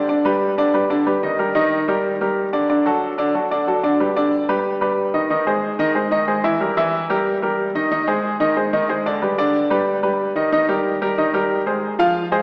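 A clear grand piano carries this passionate, driving Latin piece entirely on its own, sitting present and up front in the mix from the first moment to the last at 12.4 seconds. The tempo is a brisk 184 BPM in a straight 4/4, and the piano ranges from D3 up to F5. Its harmony moves restlessly, passing from G through Ebmaj7, D and a colourful Emaj7#5/D# before touching Eb, Ab and returning to G. At 10.5 seconds the music shifts into a new section built on Cm7 and then Fm, and the clip stops there as a fragment cut from a longer performance. A lush concert hall reverb with a 2.2-second decay surrounds the instrument, giving the sense of a church or large hall, though the overall sound has the narrow character of a small speaker.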